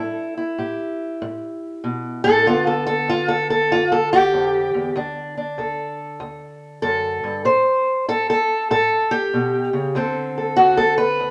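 Laid-back and swaggering, this short cut from a longer piece is acoustic country blues with a swung feel in four. A lone fingerpicked steel-string acoustic guitar carries the whole passage, sitting up front with a dark, boxy parlour tone. Its range stretches from low D2 up to C5, so the bass and treble both ring out from the one instrument. The harmony moves through A5, G7, D and A7(no3) before landing on D5 at 9.9 seconds, as the opening phrase begins again. A stone room reverb adds a live, echoing character to the guitar, as if it were played in a single hard-walled space.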